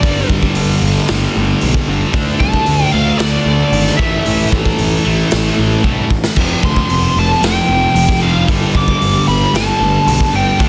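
Driving and heavy, this hard rock excerpt pairs a biting, overdriven lead guitar melody with digital delay against two sludgy distorted guitar riffs, one bright and one set back in the mix, over a dark, round fuzz picked electric bass and a gritty, up-front raw garage drum kit with a punchy kick and a pumping stone-room sound that breaks into a fill at 5.8 seconds, all within a dense, heavily limited master carrying light reverb.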